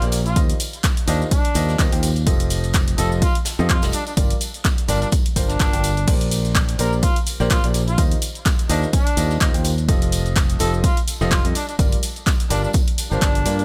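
Uplifting and joyful, this piano house excerpt moves at 126 BPM in 4/4 with a light 16th-note swing. A warm baby grand piano plays a long-sustaining riff through Eb69, F9, Gm7 and Bb69 chords with sidechain pumping, as does a bright, direct fingered electric bass, while a mellow, distant trumpet with light vibrato carries a solo melody in a classical style, both piano and trumpet trailing dub echo. A punchy, dry, overdriven analog drum machine with cabasa, crash, handclaps and hi-hat plays from the start, along with a tambourine set far back in a large room and, from 0.1 seconds, a very quiet, natural-sounding big rock kit with a medium-tuned snare. An overdriven, up-front electronic kick drives things from 0.4 seconds.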